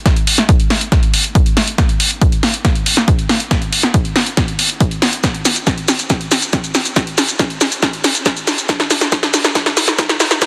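A dense, heavily limited modern master with light reverb and a high-pass filter frames this short bittersweet, emotional uplifting trance cut at 139 BPM in a straight 4/4. An up-front analog electronic kick drum plays from 0.1 to 10.5 seconds beside a punchy drum machine carrying hi-hat, shaker and snare, its hats and percussion pumping with sidechain. The whole passage is one build-up, with a drum fill and a filter sweep running through it.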